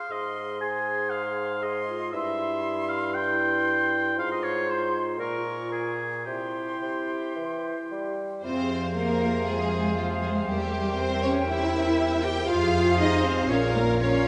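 Dramatic and restless, this quick, rubato classical-period orchestral passage in F minor opens with an up-front oboe, airy silver flute, dark background clarinet and clear bassoon woven in a church-like reverb, until at 8.4 seconds a rich, vibrato-laden violin section takes the melody over a lush, close double bass, a background viola section, an expressive portamento cello section and dark, soft-attacked French horn chords.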